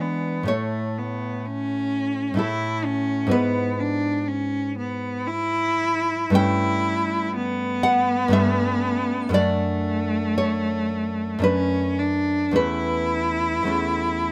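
Tender and serene, this excerpt from a romantic duo moves in a flexible, rubato triple metre, with a single bowed cello singing the melody in a rich, focused voice shaded by vibrato. A classical nylon-string guitar, fingerpicked with a dark, woody tone from old strings, carries the accompaniment through a gentle progression that settles on A/E at 12.6 seconds. Both instruments sit up front, caught by close, detailed microphones in light reverb.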